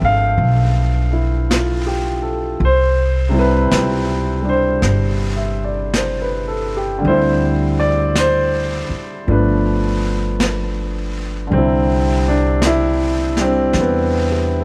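Light reverb and a small-room ambience frame this tender, late-night jazz ballad fragment in C major, moving at a slow 54 BPM with a swung 4/4 feel. A warm baby grand piano with long sustain sits up front beside a woody, thumpy pizzicato upright bass, while a brushed drum kit of snare and hi-hat enters at 0.4 seconds, lower in the mix. The harmony passes through G9, Cadd9, D9sus4 and G7 before arriving at Cmaj9 at 11.5 seconds.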